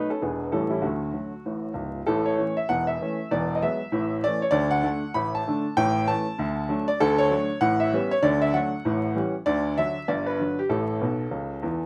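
Vinyl crackle sits under a moderate club reverb, giving this brief cut from a longer piece the feel of a club room heard through an old record. It is swinging, playful stride-piano jazz at a brisk 195 BPM in 4/4, with a swung lilt on the eighth notes. A lone upright piano carries everything, bright and woody with a polished, up-front presence and long sustain, ranging from deep C#1 bass up to B5. The harmony starts in A major, moving through dominant-seventh colour and bright added-note chords, then shifts to D major at 7.0 s, where a Gmaj7 and an Asus2 lend a lighter tint before settling back on A. The piano closes with a fill from 11.0 s to 11.9 s, where the cut ends.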